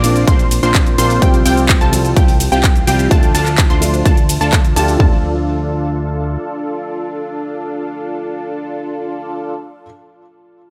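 This short cut from a festival progressive house track opens straight into the drop at 127 BPM in D minor, with a detuned supersaw stab riff, a lush unison pluck arpeggiating high above, a fat analog bass and a house kit of handclaps, hi-hat, ride and shaker all sounding together. At 0.3 seconds the big-room kit adds a punchy, up-front kick and toms with a tape-warmed, large-room character. Every melodic part breathes with sidechain pumping. The stab carries vintage 12-bit sampler grit and a moving notch, the pluck has a cassette-tape tint, and both trail delays. Beneath them, the saturated, wave-folded bass moves through a filter sweep, while a soft felt-muted upright piano with audible action noise murmurs dark, intimate chords in the background over Bbadd9, Csus4 and Dm. The drums fall away around 5 seconds, leaving the bass, pluck, stab and piano to ring out in digital ambience with an anthemic, euphoric glow.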